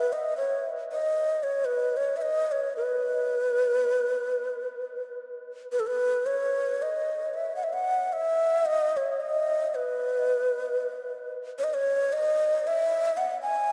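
A breathy, mellow low ney carries this short Balkan folk fragment on its own, played up front and close to the microphone with crisp attacks, expressive vibrato and the airy grain of its end-blown reed cane. In free time and B major, tuned to A4 = 439 Hz, the festive, wild line moves into a new section at 5.7 seconds and runs to 13.7 seconds. A cathedral reverb with a 5.9-second decay surrounds it, placing the ney in a vast, echoing hall.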